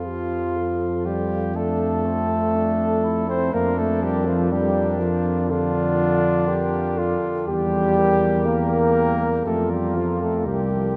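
A dark trumpet with light vibrato and a smooth top enters at 1.6 seconds to carry the melody of this noble, slow classical brass quintet passage in F major at 60 BPM, cut from a longer piece. Around it, a mellow flugelhorn plays a second line, a distant, roomy French horn sits in the background, a dark, smooth-topped trombone fills the middle, and an up-front tuba anchors the bass. The harmony moves from F to Bb/F and through Edim before returning to F and closing on C5, all set in a vast, echoing cathedral space.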